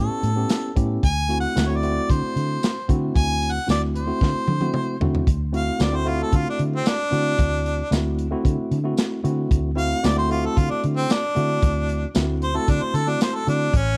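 Straight-eighth soul blues with a rollicking, laid-back mood, cut from a longer piece and captured as a dry, close 1970s-style studio recording in a small room. A crunchy breakbeat drum kit sits up front with a tight kick, medium-tuned snare, hi-hat, tambourine and toms, saturated and gritty with a rolled-off top, while a dark, foam-muted fingered electric bass gives a round, amped low end and a worn, slightly out-of-tune tine electric piano, lightly overdriven through its built-in speakers, accompanies over A9 and D9 chords. After a drum fill at 4.2 seconds, the clear harmonica, with light vibrato and a smooth top, moves into a solo at 5.3 seconds that carries through to the end.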